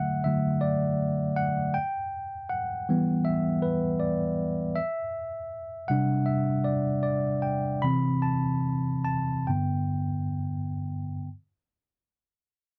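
Pop in G major, this short cut from a longer piece carries an emotional, hopeful mood at 66-80 BPM in a straight 4/4. A tine electric piano plays alone from 0.0 to 11.3 seconds, spanning G2 to B5 in an accompanying role. Its tone is warm and clean, heard through built-in speakers and placed up front with a light reverb. The chords move from Dadd9 through Em and Csus2 to Am/C before settling on G, and the tempo slows from 4.8 seconds to the close. The sound recalls a dry, close 1970s-style studio recording.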